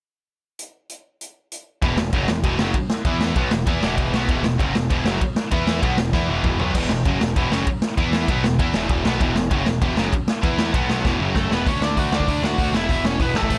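A dry, close-sounding punk rock excerpt, rowdy and energetic in a straight 4/4, opens with a raw garage drum kit alone at 0.6 seconds: a punchy kick and medium-tuned snare sit up front with a rolled-off top, alongside crash, ride, hi-hat and toms, with fills along the way. At 1.8 seconds two bright, double-tracked distorted electric guitars drive a picked riff, one high-gain and set in the background, over a growling, overdriven picked bass. At 11.4 seconds a cranked stack guitar steps up front with a melody lead, its grit touched by digital delay.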